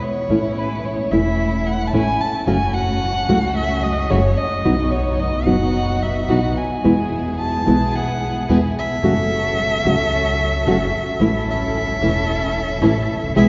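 A bowed solo violin leads this tense, passionate tango fragment, its expressive vibrato, soft attack and sliding portamento sitting up front from the very start. At 0.3 seconds the rest of the ensemble joins: a classical nylon-string guitar, thumb-plucked and warm, supplies the accompaniment, while a pizzicato upright bass with gut strings adds a woody, thumpy low end close to the listener. Behind them, a muted studio string section played con sordino offers veiled, lush stabs with a gentle attack, sounding distant and shadowy. The rubato feel lets the phrases breathe over a chord cycle moving from A through F#m, B and E, then back through F#m before returning to A. Everything is bathed in a long cathedral reverb, as if heard in a church or concert hall, with the highs rolled off to give a hazy, enveloping sound, and the passage is cut from a longer piece.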